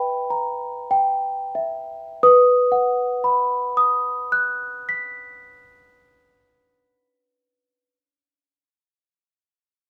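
A solo celesta opens this innocent, tender classical lullaby, its bell-like, delicate tone with soft felt hammers sitting up front in a moderate, large studio reverb. In a rubato 6/8 at roughly 29-36 BPM in dotted quarters, the music slows over the first 2.2 seconds on an Em/B chord before settling onto B major, with the celesta ranging from B4 to B6. This brief cut from a longer piece ends at 8.6 seconds.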